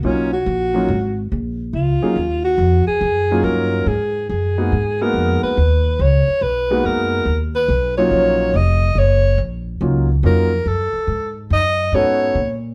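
Small-group swing and bop jazz in Eb minor, this cool, moody excerpt moves at 141 BPM in 4/4 with a swung eighth-note feel. The alto saxophone takes a solo throughout, its clear, close-miked tone shaded by vibrato and a soft attack. A warm concert grand piano with deep bass accompanies, and a woody pizzicato upright bass anchors the Ebm7, Abm7 and B7 changes, all three up front in a moderate studio reverb.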